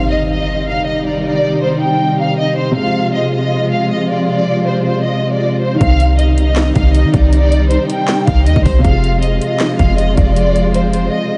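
Trap hip hop in C minor at 158 BPM with a half-time feel, brooding and menacing: an electronic impact opens as an expressive, lush violin section with vibrato and portamento carries the melody through a low-pass filter and tape echo over dark, woody sustained string chords and a smooth vintage grand piano in the background, until at 5.8 s a deep, boomy sine 808 bass and an overdriven trap kit of hard-clipped kick, sharp snare, bright hats, handclaps and rim click arrive, the mix soaked in huge dreamy reverb.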